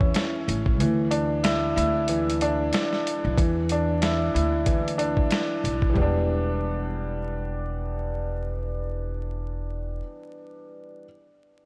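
A dreamy, reverb-soaked mix with vinyl crackle and a cathedral-like space frames this tough, dark boom-bap hip-hop excerpt in E minor, moving at 93 BPM with a swung sixteenth-note feel. A gritty, compressed sampler-style drum kit with a thumpy kick, medium-tuned snare and hi-hat sits up front, its kick dropping out between 0.8 and 3.4 seconds before the whole kit stops at 6.1 seconds. A woody, pizzicato upright bass and a clear, vintage upright piano with long sustain and a cassette-tape tint carry on as the harmony settles on Em7.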